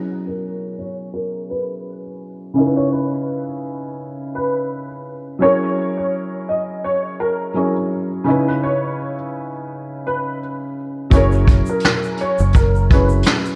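Hazy and reflective, this lo-fi hip hop excerpt at 84 BPM with a gentle 16th-note swing opens on two upright pianos, a dark, woody one carrying the melody through ensemble chorus, low-pass filtering and tape echo over a soft, felt-muted one comping with cassette grit, all under a filter sweep and dreamy plate reverb, until at 11.1 seconds a round, deep dub fingered bass, a vintage brush kit with 12-bit sampler grit and a grainy egg shaker tucked in the background join for the closing bars.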